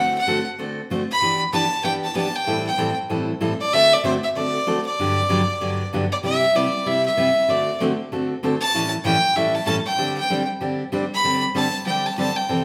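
Down-home and playful, this swung country fragment moves at a brisk 192 BPM in 4/4, with a nasal, earthy fiddle carrying the melody up front with light vibrato and an airy bow over a bright, picked dreadnought acoustic guitar, both played live in one room and bathed in a large studio reverb as the chords wander from D7 through Gmaj7 and A7 to a closing D7sus4.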